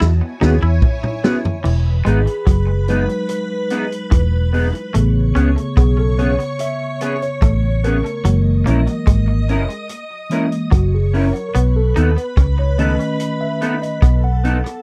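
Lovers rock reggae in E major at 73 BPM, smooth and sweet, this excerpt opens with a drum fill on a vintage kit with a punchy kick and dark cymbals, backed by a round, foam-muted fingered bass, a bright picked guitar riff with tape echo, and a silky string machine playing a second line with ensemble chorus. From 0.4 seconds a slightly broken-up guitar through a small old amp adds stabs with analog chorus, and at 1.7 seconds the mellow tine electric piano takes a solo over Emaj7, Amaj9, F#7 and B7. The sound is a dry, close 1970s-style studio recording with light reverb, drums and bass sitting up front.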